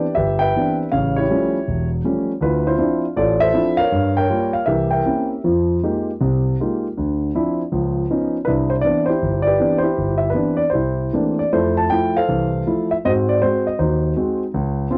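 A dark, mellow concert grand piano plays solo jazz up front in C major at 159 BPM, its deep bass and rich extended chords such as Cmaj9, Dm9 and Db9 unfolding with a swung, rubato feel through light reverb and the warbly pitch drift of worn old cassette tape, giving this 15-second cut from a longer piece a relaxed, sophisticated mood that turns toward a new section at 11.5 seconds.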